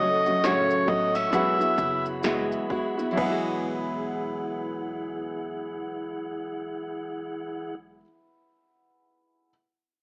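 Heartfelt and sunny, this short acoustic pop fragment in E major moves at a slow 63-70 BPM in 4/4 with a gentle sixteenth-note swing, easing back in pace over its first 3.2 seconds as the harmony passes from F#m to Eadd9. An overdriven harmonica carries the melody up front for only the opening 2.1 seconds, gritty and amplified with light vibrato and tongue slaps. Beneath it, a brilliant, polished grand piano rings on to 9.5 seconds, joined by a dark, full-bodied fingerpicked nylon-string guitar and a soft, flute-like tonewheel organ with key click, third-harmonic percussion and a fast rotary speaker. A picked dreadnought steel-string guitar with old strings adds woody arpeggios in the background, while a thumpy pizzicato upright bass on gut strings sits low in the mix. Punchy 80s electronic pad drums with a gated snare, crash, kick and shaker appear from 0.3 to 3.4 seconds, tape-tinged and re-recorded in a small room, and the whole recording carries a moderate studio reverb and an AM radio character.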